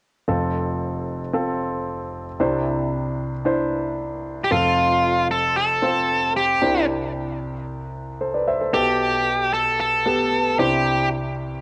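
Captured on a home cassette in a short, wet room, this anthemic pop excerpt at 114 BPM in C major opens at 0.3 s with an intimate concert grand piano, up front with audible action noise and deep bass, moving through F, Cadd9 and Gadd9/B chords, before a bright, smooth overdriven lead guitar with a cassette-tape colouring joins at 4.4 s to carry the melody through to 11.1 s.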